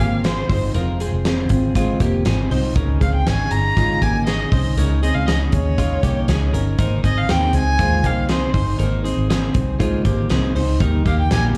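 Jangly indie pop at 119 BPM in Ab major, nostalgic and bright, captured as a live gig through a club PA with a touch of club reverb, moving from Fm to Abadd9 in this short cut from a longer piece. A rich, focused violin with vibrato carries the melody over a full-bodied, fingerpicked jumbo acoustic guitar and a clean, compressed twelve-string electric playing arpeggios, both guitars and the violin touched with slapback echo and the twelve-string also given tape echo. Underneath, a dark, round, foam-muted vintage bass and a big-room rock kit with a fat snare, punchy kick and rolled-off top sit up front, every part entering at the start, the violin ending at 11.4 seconds and the rest running through to 11.6.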